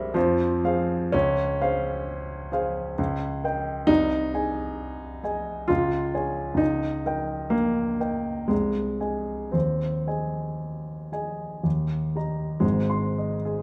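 Flowing in a rubato triple metre that drifts between 56 and 73 BPM, this romantic character piece for solo piano moves with a brooding, passionate sway. A baby grand carries the whole passage, covering a span from Ab1 up to C6 in the key of Ab major. Its tone is warm, intimate and natural, placed up front with short sustain, and the soft clatter of its action can be heard beneath the notes. The harmony opens on Fm and passes through Dbmaj7, Eb7/Db and Ab/C, then circles back through Db, Eb7/Db and Ab/C before settling on Ab/Eb, Eb and finally Ab at 12.6 seconds. A moderate stone-room reverb lends the instrument a sense of space. Lasting about 13.6 seconds, the passage is cut from a longer work.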